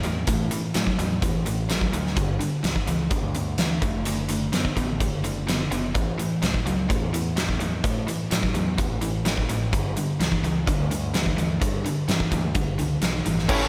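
Swaggering and driving, this classic rock passage at 127 BPM in 4/4 is cut from a longer piece and led by a huge arena drum kit with a fat snare and punchy kick sitting up front, while a growling, overdriven fingered bass and two picked, overdriven electric guitars (one crunchy in the background, the other a very quiet cranked stack) carry the riff through A5, G5 and D/F# changes. A reedy electric piano with fast tremolo and a gritty, barely audible tonewheel organ on slow rotary appear only at 13.5 seconds, just as the excerpt ends. Light reverb and small room ambience frame the mix.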